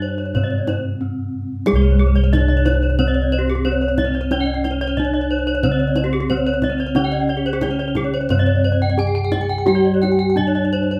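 Ringing bronze metallophones open this ceremonial, shimmering Balinese gamelan fragment alongside mellow, round bossed gongs up front and a tight kendang in the background, with the wooden-mallet melody's paired tuning shimmering alongside two bright, horn-mallet arpeggio lines, while a lower, mid-forward metallophone accompaniment falls away after a brief break ending at 1.7 seconds and returns at 7.0 seconds in a live room with light reverb.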